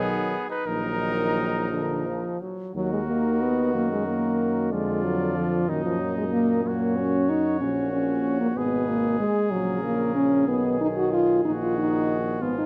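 A French horn sits up front with a warm, smooth tone in this solemn, grave classical brass quintet fragment, which moves freely in a rubato 6/8. Two trumpets play throughout: one carries the melody in the background with light vibrato, and the other plays a soft-attacked second line, while a distant trombone and a roomy tuba fill out the accompaniment and bass. Close, detailed microphones capture the players in a recital hall with moderate reverb, and a new section begins at 2.7 seconds.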